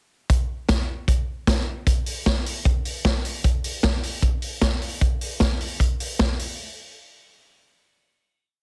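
A vintage acoustic drum kit carries this short indie pop piece on its own, its punchy kick, medium-tuned snare and hi-hat sitting up front with a warm, rolled-off top. The tempo is a brisk 152 BPM in a straight 4/4, and the mood feels nostalgic and breezy. The kit plays a dance-floor indie beat with off-beat open hats through a verse that runs from 0.3 to 6.6 seconds. A final hit arrives at 6.6 seconds and closes the piece by 8.6 seconds. The sound is dry, with little reverb, and heavily compressed in a radio-like way that keeps the drums natural yet squeezed and close.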